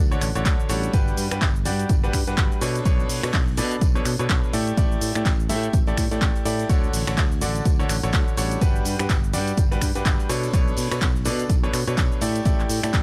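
This dry, gritty hardware recording captures a feel-good, joyful slice of piano house, cut from a longer piece and moving at 125 BPM in 4/4 with a swung sixteenth-note feel in D major. A barely audible electronic impact opens it at 0.0 s, and a bright grand piano carries the riff almost at once, its brilliant, intimate tone complete with audible action noise and sidechain pumping. Beneath it, a growly, punchy fingered electric bass sits direct in the mix and pumps to the beat as well. A punchy analog drum machine supplies cabasa, finger snaps, handclaps and hi-hat from the start, and a tape-warm electronic kick drum thumps in at 0.5 s. A very quiet soft-mallet acoustic kit adds hi-hat, tambourine and a fat snare with a big-room feel, and a close, dry tambourine with an egg-shaker, group-handclap quality slips in at 6.7 s. The harmony cycles twice through Dmaj7, Gmaj7, Bm9 and A7sus4, keeping the mood sunny and buoyant.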